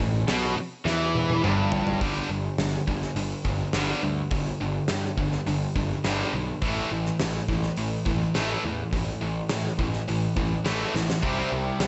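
Hard rock in 4/4 with a straight, aggressive and heavy feel, cut from a longer piece: a gated 80s drum kit with a fat snare and tight kick sits up front beside a high-gain distorted guitar riff and a growly fuzz picked electric bass, while a distorted electric guitar riffs in the background. A double-tracked overdriven electric guitar joins only from 0.0 to 2.0 seconds and again from 11.2 seconds. Drum fills mark the move from A5 to G5 at 2.0 seconds and come again near 10.9 seconds, all within a small room ambience that rolls off above 8.0 kHz.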